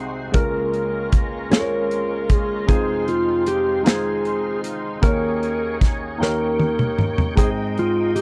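Slow gospel in a straight 6/8 with a soulful, jubilant mood, built on a woody upright piano, a lightly overdriven tonewheel organ with slow rotary speaker and chorus vibrato, and a dark, reedy string section bowing sustained chords far in the background. From 0.3 seconds a clean, compressed lap steel guitar sings the melody with slide and volume swells, while a punchy, polished acoustic drum kit with a medium-tuned snare sits up front. The drums play a fill from 6.2 to 7.4 seconds before the harmony settles on Abmaj7, all captured in a dry, close 1970s-style studio sound with light reverb.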